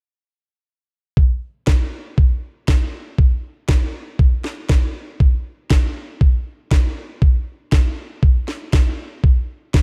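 Feel-good and groovy, this short cut of nu-disco rides a straight 4/4 pulse at 119 BPM. An electronic kick drum opens the beat at 1.2 seconds, a thumpy, sampler-style sound with a tape-warm character that sits up front and carries the most weight in the mix. It was re-recorded in a small room, which gives it a snug, close presence. At 1.7 seconds an electronic snare drum joins: a layered, produced, cracking hit pushed through overdrive and set much lower than the kick. A digital ambience surrounds the pair, and both drums play through to 9.8 seconds within a single section.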